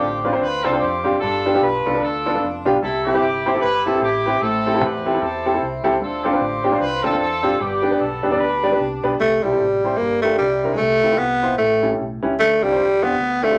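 A growling tenor saxophone takes over the melody at 9.2 seconds, its raspy, gritty jazz tone pushing forward in this short, uplifting slice of uptempo gospel at 150 BPM in C major, swung in 4/4. Before it arrives, a clear horn section carries the tune in a pop-style ensemble voicing with vibrato, sounding roomy and somewhat distant. A warm, woody upright piano supports both melodic voices from the start through 13.6 seconds, moving through a progression that opens on Dm7, G7 and C6 and later turns toward Gm7, C9, Fmaj7/C and A7 before landing on Dm7. Underneath, a deep dub fingered electric bass adds a dark, round, punchy foundation, sitting low in the blend. A wet studio reverb adds to the jubilant glow, and the passage is cut from a longer piece.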